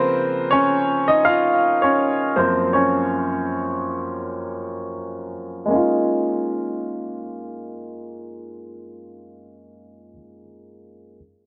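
A clear baby grand piano opens this tender, dreamy R&B fragment alone, its intimate, up-front sound carrying audible action noise and long sustain through a lightly swung 4/4 feel. A filter sweep colours the piano over the first 5.7 seconds as the harmony moves from Db6/9 to Gbmaj7 and back, while tape echo and a low-pass filter soften its edges. A modest booth ambience surrounds the instrument until the cut-off at 11.2 seconds.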